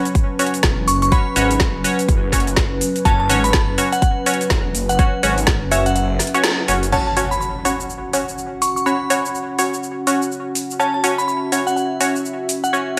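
A punchy, up-front electronic kick drives this swaggering, bouncy bass house excerpt at 124 BPM with a 16th-note swing, until it stops at 5.6 seconds. A garage kit with a woody snare, metallic hats, shaker and crash adds overdriven grit, while a swirling, thick phased saw bass pumps in the low end and a nasal, band-passed chord stab with dub echo sits bright and forward over a dark analog pad roughened by vintage sampler grit. A crystalline FM bell melody rings through chorus and echo, and an electronic impact lands at 6.9 seconds to open the second section, all inside a moderate digital room reverb on an F# chord.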